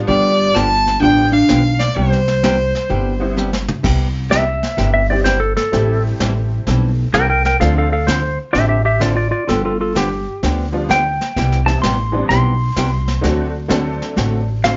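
A swung 4/4 feel at 128 BPM sets up this cheerful, down-home western swing passage in C major, where woody pizzicato upright bass, a brushed vintage drum kit with dark cymbals and a compressed, miked archtop guitar carry the groove throughout, while a jangly, detuned honky-tonk upright piano comps in and out. A clear, focused fiddle with light vibrato leads over a clean hollow-body jazz guitar line until a drum fill at 3.4 seconds, and a twangy, up-front lap steel guitar enters at 4.3 seconds for a slide solo over Am7, Dm7, G7, Cmaj7 and D7 changes in a moderate club reverb.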